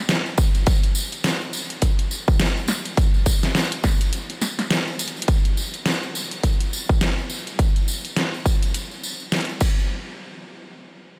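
A punchy, overdriven electronic kick drum sits up front in this gritty, swaggering glitch hop excerpt, entering at 0.4 seconds with a layered, produced weight that carries a small-room character. Alongside it, a dubstep drum kit, also overdriven and close, brings a deep snare, hi-hat and crash cymbal, all set to a 4/4 groove with a loose 16th-note swing. An acoustic tambourine adds a jingly shimmer from further back, sounding as if placed in a large room. The opening plays as a drop, and the kick falls away at 4.7 seconds, leaving space for a drum fill at 5.0 seconds before the next section arrives. A light reverb gives the mix a touch of air.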